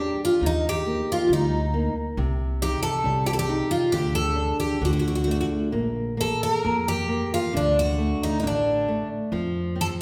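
A reverberant recital-hall sound, as in a church or concert hall, surrounds this fado-style ballad, a passage cut from a longer piece. The mood is mournful and longing, with a rubato feel over a 2/4 metre. Up front, a picked twelve-string acoustic guitar carries the melody, its octave-doubled strings shimmering and full-bodied, with finger squeak audible. Beneath it, a fingerpicked flamenco guitar with fresh strings gives warm accompaniment, while a pizzicato upright bass adds a woody, growly low end. All three play through the roughly ten-second passage as the harmony moves from Eb and Cm through Dsus4 to power chords on D, Bb and F.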